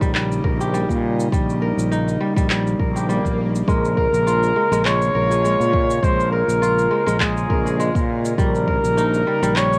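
A home cassette recording with moderate spring reverb carries this hypnotic, mystical organic downtempo fragment in Bb dorian at 102 BPM, its 16ths lightly swung, moving from Eb7/Bb to Bbm7 and back. Crisp, ringing kora arpeggios with tape echo and shimmer reverb float over an airy, detuned pad that pumps softly in the background, while a growly, up-front fretless electric bass, electronic cabasa and handclaps, and a deep electronic kick hold the groove until the kick drops out at 8.8 seconds. After an electronic swell at 2.8 seconds, a veiled, bucket-muted trumpet enters at 3.7 seconds, playing a breathy, intimate jazz-style solo with light vibrato and scooped notes.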